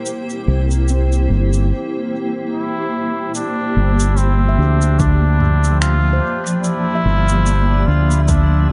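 This recording sits in a light digital ambience with a soft, rolled-off top end: a meditative ambient dub fragment, cut from a longer piece, with a deep, unhurried mood and a gentle swing. A cloudy, blurred granular pad holds sustained chords throughout, detuned and evolving inside its own reverb. Behind it, a ringing stainless-steel handpan plays fingertip arpeggios, its close tone carried by dub echo and shaped by a filter sweep across the opening. A round, punchy fingered electric bass sits up front with a dark, direct-amped tone, alongside an organic electronic kit of finger snaps, shaker and toms that sounds tape-coloured and re-recorded in a large room. At 2.5 seconds a trombone with a straight mute enters as a nasal, brilliant solo voice in a classical style, its melody trailed by dub echo. The harmony moves from C7 to Gm7 at 3.4 seconds, and a layered electronic kick adds a deep pulse from 5.0 seconds.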